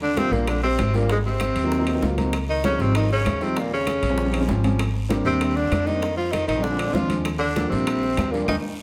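Two tenor saxophones lead this lively, sunny Afro-Cuban jazz excerpt at 195 BPM in Eb major. A breathy, whispered lead carries the melody up front while a second, lower tenor adds a present second line, both with light vibrato and scooped notes. A growly pizzicato upright bass sits up front from the start, joined by high-tuned congas played with soft hands in the background. At 0.2 seconds a concert grand piano enters with intimate accompaniment and audible action noise, along with tight, very quiet bongos, ringing metal-shell timbales and a raspy guiro, and woody claves follow at 0.5 seconds. The chords move through rich extended harmonies such as Ebmaj9, Dbmaj9#11 and Eb13 before a band accent closes the passage, all set a little back in a large studio with moderate reverb.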